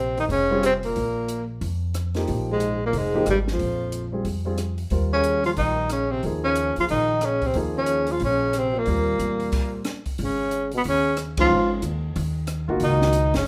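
A breathy tenor saxophone leads this cool, hypnotic modal jazz excerpt, sitting up front with a whispered, intimate tone, vibrato, scooped notes and a soft attack. Behind it, a mellow trombone carries a second line in the background, while a woody pizzicato upright bass on steel strings anchors the low end close to the listener. A grand piano with a natural sound supplies the accompaniment, and a compact cocktail drum kit, dry, with dark cymbals, a high-tuned snare and a punchy kick, keeps a swung eighth-note feel at a lower level. The band stops briefly at 9.5 seconds, moves into a new section at 10.2 seconds, and lands a full-band accent at 11.3 seconds. A moderate large-studio reverb lends the performance a sense of space.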